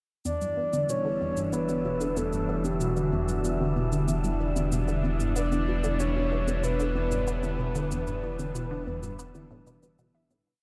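A breathy, flute-like synth lead carries a free-floating melody through this short, complete piece of ambient, sequencer-driven space music, its soft tone thickened by lush chorus, vibrato, cassette-tape grit and tape echo. Beneath it, a phased analog pad holds swirling, evolving chords on Em7, while a round, deep analog bass sits up front on a sustained root. Two step sequences circle in loops that drift against the bar: a juicy, squelchy resonant blip pluck with phaser and tape echo repeats a six-step riff, and a very quiet, lo-fi, warbling pluck traces five-step arpeggios. Light electronic congas and cabasa tick along in a machine pulse, and an airy, wind-like tuned noise texture enters at 1.1 seconds to hold a high note in the background. The dark production is bathed in a huge ambient reverb, lending an expansive, cosmic mood before the music fades out from 7.1 seconds to its close at 10.5 seconds.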